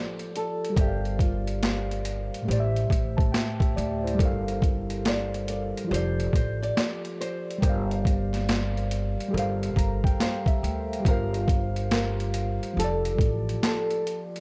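Swung boom bap drums with a thumpy kick and high-tuned snare, gritty and pitched down with overdrive and large-room sound, sit up front in this melancholic, nostalgic lo-fi hip hop excerpt. Muted, felt-like synth keys with warbling chorus and cassette-tape wear carry the chords beneath a small, thumb-plucked nylon-string guitar melody with audible finger squeaks, while a woody, growly pizzicato upright bass joins at 0.8 seconds and drops out at 13.5 seconds. The production is dark and warm with digital ambience, moving into a new section at 11.1 seconds.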